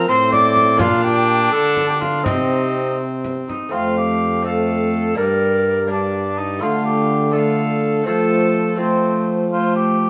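A renaissance-style consort dance in 6/8 at 83 BPM, this short cut from a longer piece feels rustic and solemn as it moves through F, Bb, Cm, Gm and Dm chords. An airy alto recorder with crisp chiff carries the melody, while a dark cor anglais sits up front with light vibrato on the second line. Beneath them play a reedy gut-string viola, a delicate fingerpicked lute in the background and a smooth-topped trombone on the bass, with a frame drum played with soft hands from 0.3 to 3.7 s, all in a moderate stone room reverb.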